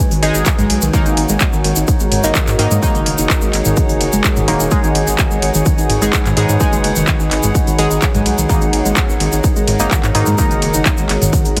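Sustained chords from a deep, moody ambient pad open this driving, dramatic melodic techno excerpt in G# minor at 127 BPM, joined at once by woody wave-folded pluck arpeggios and punchy, nasal synth brass stabs treated with phaser and tape echo, all pumping against the sidechain as the harmony moves between G#m7 and D#m/G#. A warbling, lo-fi tape-like pad adds nostalgic texture, while a round analog bass, a techno kit with smooth hats, claps, ride and toms, a grainy egg shaker and, from 0.5 s, a heavy layered electronic kick push the groove forward. The mix carries light digital ambience and a heavily compressed, radio-like sound.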